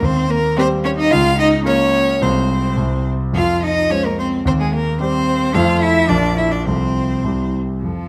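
A dark, mellow concert grand with deep bass carries the accompaniment in this dramatic, urgent classical-period piano trio movement, sounding up front from the start together with a smooth, even bowed violin melody and a cello second line, both strings rich with vibrato. The quick movement in 2/4 is played with rubato, with the violin placed forward in the blend. Close, detailed microphones catch each player inside a moderate recital-hall reverb, and the 8.1-second passage is cut from a longer piece.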